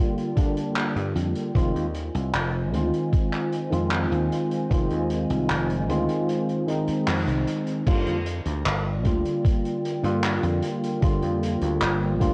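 A bright tine electric piano, up front with analog chorus and tape echo, opens this melancholic, hazy vaporwave excerpt over a warbling, detuned tape-like pad of sustained chords that sits mellow in the background, moving from Gm7 to Fm7. A loose, roomy indie kit of dark cymbals, handclaps and hi-hat with gated reverb joins at 0.2 seconds, followed by a thumpy sampler-style electronic kick at 0.4 seconds and a punchy, foam-muted thumbed slap bass at 1.0 seconds. The kick drops out from 6.3 to 7.9 seconds around a band accent before the music returns to Gm7, all wrapped in a moderate stage reverb and cassette-tape haze.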